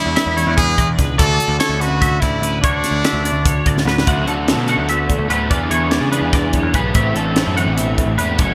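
Math rock and midwest emo in a playful, intricate 7/8, cut from a longer piece: a brilliant, forceful trumpet with light vibrato carries the melody until 3.8 seconds, over a dark, fingered electric guitar in the background and twangy, compressed clean guitar arpeggios with ensemble chorus. A growling, overdriven picked bass and a crisp fusion kit with a high-tuned snare, punchy kick and gated reverb drive the groove, and after a drum fill a crunchy, double-tracked overdriven guitar riff enters up front at 4.1 seconds. The bright 1980s-style digital production sits in a lush hall reverb.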